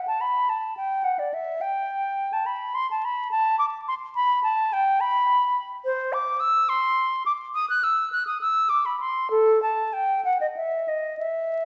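In a rubato 6/8 feel of roughly 61-73 BPM (dotted quarters), this solemn, grave fragment of a baroque-style classical fantasia in E minor, cut from a longer piece and tuned to A4 = 439 Hz, features an unaccompanied concert flute, pure and straight-toned with tongued notes, placed up front and ranging from A4 to F#6 between 0.1 and 11.7 seconds, set in a wet church or concert hall reverb with vinyl crackle.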